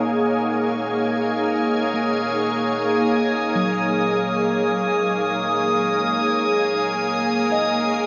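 A soft, organ-like pad sits up front from the opening moment, holding sustained chords with a pure, bright tone, a slow attack and a long release, thickened by ensemble chorus and its own reverb. This short ambient passage in F# major drifts in free time, peaceful and serene, resting on a single F#69 chord throughout. At 1.9 seconds, muted, felt-like synth keys enter in the background with dark, intimate arpeggios, their quick, decaying notes softened by chorus and tape echo. A glassy texture of drifting overtones arrives at 2.8 seconds, a calm high shimmer colored by chorus and built-in reverb. The whole fragment, cut from a longer piece, is bathed in the lush wash of a concert hall reverb.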